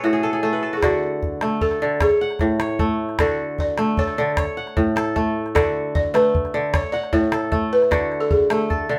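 The recording has a live-in-one-room feel, with a moderate studio reverb that gives the trio a short, natural sense of space. This joyful, flowing West African string and xylophone music moves at 102 BPM, counted in dotted quarters, in a straight 12/8, and sits in D lydian. It opens with a kora fill from 0.0 to 0.8 seconds, played alongside the balafon. The bright, crisp, fingerpicked kora stays up front, its ringing arpeggios spanning from A2 to F#5. The calabash enters at 0.8 seconds, a small, close percussion sound sitting lower in the balance. The woody, buzzing balafon carries the melody between F#4 and D5, played with soft rubber mallets for a dry tone. Beneath them the harmony alternates steadily between D and A, and the passage is cut from a longer piece.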